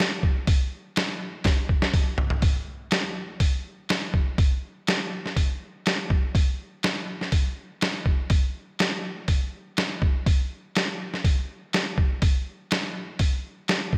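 Anthemic and powerful, this rock excerpt rides a straight 4/4 at 123 BPM, built entirely from a lo-fi sampler-style drum kit that plays from 0.0 to 14.0 seconds. The kit sits up front, compressed and pitched down, with a muffled, tape-warm character, a thumpy kick and a medium-tuned snare alongside hi-hat and toms. A drum fill runs from 1.4 to 2.4 seconds, closing the brief opening passage before the main section takes over at 2.4 seconds and carries through to the end. A moderate concert hall reverb lends the beat a sense of space, giving the sampled drums a larger-than-life scale. Cut from a longer piece, it feels like the driving foundation of a bigger arrangement.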